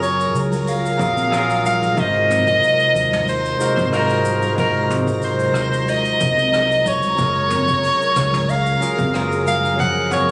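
Blissful and smooth, this sunset chillout excerpt is led by a clear, close-miked soprano saxophone with vibrato and tape echo, riding up front over a barky, bright tine electric piano, a breathy pad with chorus and a fingered electric bass, all moving between Gbmaj9 and Ab13 chords. A soft brush kit with cabasa, hi-hat, rim click and toms keeps time alongside congas entering at 0.5 seconds and an overdriven electronic kick arriving at 1.0 seconds, both sitting in the background. A twinkling granular texture with an octave-up shimmer and its own reverb sparkles above, all set in a small room with light reverb.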